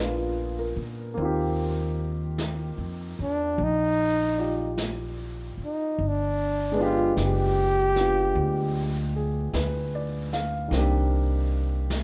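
Jazz in Eb major at a slow 50 BPM with a swung 4/4 feel, intimate and late-night in mood, cut from a longer piece. A breathy, whispered flugelhorn carries the melody up front with a soft attack and vibrato until 9.1 seconds, over a natural grand piano, a woody, growly pizzicato upright bass, and a distant, roomy brush kit that enters at 1.2 seconds on brushed snare and hi-hat. Rich chords such as Eb69, G7b9 and Cm9 drift beneath, all set in light reverb.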